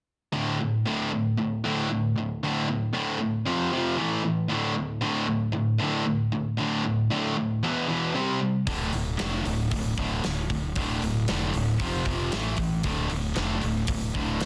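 Two overdriven electric guitars open the excerpt at 0.3 s, one crunchy and the other bright and up front, picking a heavy, menacing power-chord riff in D minor that moves through D5, F5, A5, E5 and C5 at 115 BPM in a straight 4/4. At 8.7 s a growly, fuzz-laden fingered bass and a big acoustic rock kit with a punchy kick, medium-tuned snare and hi-hat join in. The hard rock sound sits in a moderate studio reverb with a touch of small-room ambience, under a dense, heavily limited modern master.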